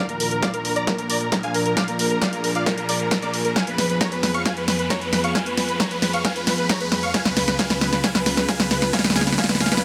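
Uplifting trance at 134 BPM in 4/4, this euphoric, soaring build-up is cut from a longer piece and runs as one continuous drum fill to 9.8 seconds. Up front, a huge, detuned supersaw carries the melody between Bb4 and Db6, its sawtooth layers thickened by a sub octave and vibrato, shaped by a low-pass filter, dub echo and sidechain pumping. Beneath it, a lush, warbling unison pad holds sustained chords from Db2 to Bb4 with a slow attack and long release, its vintage chorus shimmer also pumping against the beat. A punchy analog drum machine drives the hi-hat and snare close to the listener, while a tape-tinged electronic kick, high-pass filtered, sits further back from 0.4 seconds, and a background riser climbs in from 0.2 seconds. The harmony moves from Bb to Fdim to Db, all bathed in a huge ambient reverb with a long 4.6-second tail.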